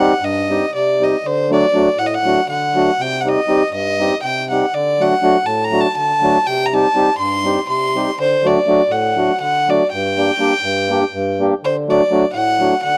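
A bowed violin, rich and floating with a soft sul tasto attack, carries the melody up front from the first second, over a mellow, reedy single-reed accordion accompaniment in this bittersweet yet fiery Balkan folk fragment in 7/8, cut from a longer piece, moving through minor and major chords in a dry, close studio sound with light reverb.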